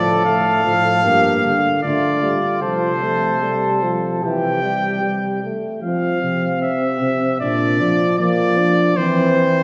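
Elegant and stately, this excerpt from a classical imitative canzona for brass ensemble moves at 76 BPM in F major, with a bright, up-front trumpet carrying the melody over a distant, roomy flugelhorn second line that stops at 5.4 seconds, a soft-attack euphonium accompaniment with vibrato, and a dark bass trombone foundation, all bathed in a wet church reverb as the harmony passes from D minor through C toward a closing C/E.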